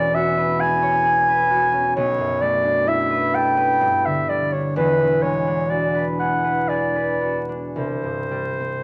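A mellow clarinet and a concert harp begin together in this hazy, wistful impressionist duo, a brief passage of 8.8 seconds cut from a longer piece. The clarinet carries the melody between B4 and G#5 with a soft attack and a smooth top, sitting up front in a poised classical style. Beneath it, the ringing, fingerpicked harp ranges from a deep E1 up to C#5, its acoustic tone warm and close. The music moves in a slow, rubato 3/4 at roughly 54-68 BPM, tuned to A4 = 439 Hz. The harmony drifts through E69, Bm11, Gmaj7 and E9 before settling on an open C major seventh sonority at 7.8 seconds. A moderate stone-room reverb and a layer of vinyl crackle lend the recording a softly aged, dreamlike glow.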